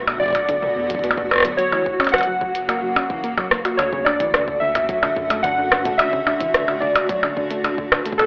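Dry and hardware-toned, with a cassette-tape, telephone-like quality and a light digital ambience, this wistful, glitchy IDM fragment moves at 109 BPM in D major through Bm7, F# and Dmaj7. Up front, a glitchy drum kit of clicky hats, rim clicks, toms and percussion blips sits over a deep electronic kick in the background, while a round sine sub bass hums low beneath. A blurred, evolving granular cloud pad holds sustained chords in its own reverb, a dusty pluck with chorus and tape echo spins arpeggios, and from 0.2 s warbling, nostalgic lo-fi synth keys carry the melody with 12-bit sampler grit.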